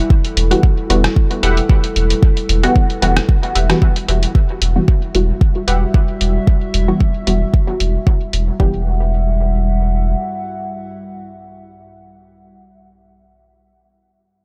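A lightly swung 4/4 groove from a deep, up-front electronic kick and a muffled, pitched-down sampler kit of hi-hat and rim click with dub echo drives this meditative, hazy dub techno excerpt, the kit falling away at 8.4 seconds and the kick at 8.7 seconds. A round sine sub bass pumps under sidechain until 10.2 seconds, while a dark, wave-folded analog pad sustains an Emadd9 chord through lush chorus and its own sidechain pumping. Two filtered, detuned sawtooth dub chord stabs fill the mix: a lower, muted one with chorus, phaser and dub echo enters almost at once, and a higher, mellow, evolving riff soon joins with chorus, pumping and echo, all in a dry space.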